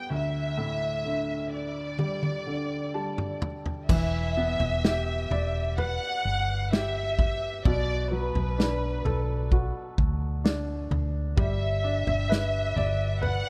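A small room's ambience and audible lossy compression artefacts color this heartfelt pop ballad fragment, which moves at a slow 64 BPM in a straight 4/4 over chords from Dsus4 through Em7, Bm7 and G6. A dark, woody violin section carries the melody with soft-attacked vibrato, sounding distant, while a clear concert grand piano with deep bass and short sustain accompanies and adds a fill before 3.9 s. A natural, acoustic drum kit with a punchy kick enters at 2.0 s on a fill, and a round, foam-muted vintage electric bass joins at 3.9 s to anchor the emotional second section.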